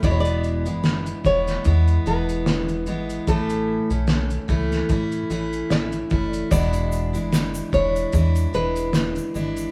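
A picked steel-string acoustic guitar sits up front with a full-bodied jumbo tone and audible finger squeak, picking through E, A and E7 beneath a dark, fingerpicked nylon-string guitar melody in this carefree, sunny acoustic pop excerpt at 74 BPM with a light sixteenth-note swing. A plucky analog bass with a punchy, funky filter pluck and a muffled, cloth-damped drum kit with a fat snare and tight kick hold the groove, while a grainy tube shaker joins in the background at 6.5 seconds. The band sounds as if playing live in one room, bathed in a wet studio reverb.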